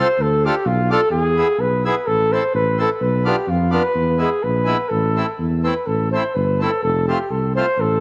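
A bouncy 2/4 with a gentle swing drives this jolly alpine dance-band snippet, cut from a longer piece and moving through a minor-key progression that closes on F. A mellow, distant flugelhorn carries the melody up front in a classical style, while a reedy, hollow accordion fills in the accompaniment. Beneath them a dark tuba with light vibrato and a smooth top holds the bass, entering at 0.2 seconds with a touch of transformer saturation, and the whole band sits in a moderate plate reverb.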